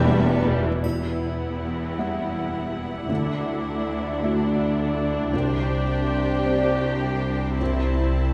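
Sorrowful and longing, this brief cut from a cinematic film score for orchestra drifts in E minor at a rubato 53 BPM in 6/8, moving through chords such as Emadd9, Dadd9 and Csus2. A rich, focused violin section carries a second line over an up-front, smooth viola section, a muted, intimate upright piano with audible action noise, a very quiet, bright harp ringing out arpeggios, and a bass of bowed double basses and soft-attack cellos. A lush violin melody and a clear French horn section are heard only within the first 0.6 seconds, while a faint triangle sounds between 0.8 and 2.3 seconds, all bathed in the long reverb of a church or concert hall.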